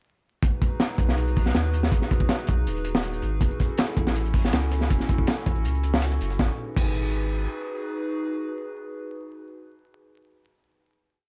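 A frenetic, nostalgic drum and bass piece in the jungle mould opens at 0.4 seconds, as a crunchy, heavily chopped breakbeat kit and a soft, round dub sub bass arrive together, with a pad following a moment later. The main kit sits up front, with a punchy kick, a high-tuned snare, dark cymbals across crash and hi-hat, saturated grit and a rolled-off top. Beneath it the deep sub bass carries a sustained dub-style line, while a warbling, lo-fi pad holds dark chords with syncopated pushes, moving one shape in parallel from G#m7 to F#m7 and back, its chorus and built-in reverb lending a hazy glow. At 3.4 seconds a second, sampler-style break slips in far in the background, compressed, pitched up and tape-tinged, its high-passed hats and snare looping with edits. The drop gives way at 6.4 seconds to a final chord, where the drums and bass soon fall away and leave the pad to ring out, all of it set in a small room ambience with vinyl crackle and a dry, gritty hardware character.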